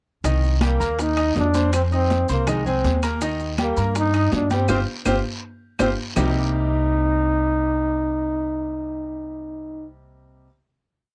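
A fiery, passionate salsa groove in straight 4/4 is built on a thumpy upright bass tumbao that anticipates the chords, a brilliant piano montuno in octaves, and a percussion bed of ringing congas with slaps and open strokes, very quiet round bongos in steady eighths with hand bell, metal-shell timbales, a two-bar clave time line, raspy guiro and grainy maracas. Over this, a breathy, whispered trombone with light vibrato carries a motif-based solo of call phrases, up front in a dry, close 1970s-style studio sound with light reverb. A drum fill and band accent from 4.7 s lead into a held final chord, with the percussion stopping at about 6.3 s while piano and bass sustain to 10.5 s.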